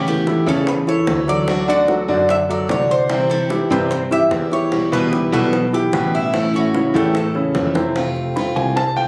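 Sunny and warm, this straight-feel Cuban son and guajira excerpt sets a metallic, double-strung tres melody over a boxy, picked steel-string acoustic guitar with finger squeak, an up-front grand piano whose intimate arpeggios carry audible action noise and long sustain, a growly, hollow-bodied fretless bass and round, low-tuned bongos struck with hard hands in the background, all heard in a moderate studio reverb captured by a phone in the room, before a drum fill at 7.8 seconds opens onto a brief piano solo from 8.0 seconds.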